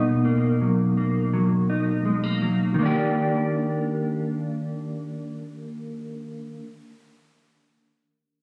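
A straight 4/4 pulse at 83 BPM gives this short indie pop excerpt, cut from a longer piece, an unhurried, laid-back feel in Eb major, tuned slightly low with A4 at 436 Hz. A mellow electric guitar carries the whole passage as accompaniment from 0.0 to 6.7 seconds, fingered and clean with a dark tone, sitting up front in the mix between B2 and G4. A lush chorus and a vibrato effect give its notes a gently wavering, nostalgic shimmer. The harmony moves from Bmaj7 at the start to Ebmaj7 at 2.8 seconds, where a second section begins that runs to 5.7 seconds. Captured on a phone in the room and touched with light studio reverb, the sound feels intimate and slightly hazy, like a private sketch played late at night.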